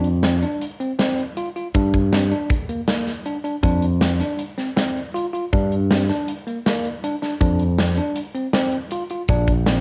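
Intricate and tense, this progressive instrumental excerpt moves at 159 BPM in an uneven 5/4 with a straight feel, cycling between F5 and Gm before landing on Bbadd9 near 9.3 seconds. A bell-like tine electric piano plays clean arpeggios with a cassette tape character, while a modern fingered electric bass sits up front with a bright, direct tone. A big acoustic rock kit with a punchy kick, medium-tuned snare and hi-hat also carries cassette tape coloring and sounds up front in a big room. The whole home recording has a light reverb.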